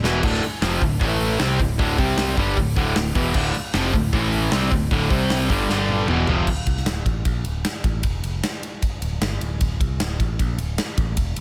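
A lightly reverberant hard rock recording cut from a longer piece opens at 154 BPM in D minor with a driving, heavy straight 4/4 feel and a drum fill, as three overdriven guitars—a cranked stack guitar, an overdriven semi-hollow guitar and a double-tracked distorted electric guitar in the background—play a riff moving through Dm, A5, D5, C5 and G5 chords until 6.5 seconds. Beneath them a growly, direct picked electric bass and an up-front, airy, polished acoustic rock kit with punchy kick, medium-tuned snare, toms and bright cymbals carry through to 11.4 seconds, with a second drum fill marking the turn into the next section, where bass and drums play alone.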